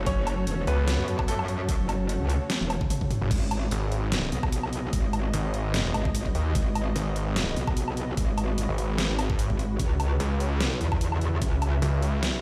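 A swung, half-time dubstep groove of overdriven electronic kick and a layered kit with deep snare, bright hats, crash, toms and woodblock drives this aggressive, menacing drop, where a growling, snarling distorted saw bass and a metallic FM wobble bass sit up front over a mellow, morphing wavetable pad and veiled, muted con sordino strings, both pumping in the background, while a brilliant grand piano with digital delay plays the melody only until 3.2 seconds, a drum fill leads into the second section at 3.3 seconds, and the whole sounds as if played on a big sound system in a bare stone room.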